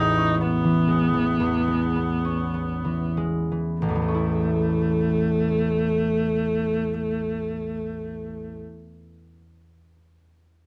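In a free, rubato 4/4 that slows through its first 3.8 seconds, this dreamy, pastoral fragment of an impressionist classical duo sets a single rich, bowed viola melody, expressive with vibrato and portamento, up front beside the equally up-front ringing, fingerpicked concert harp, moving from an Amaj9 chord to a plain A in a dark production with light reverb.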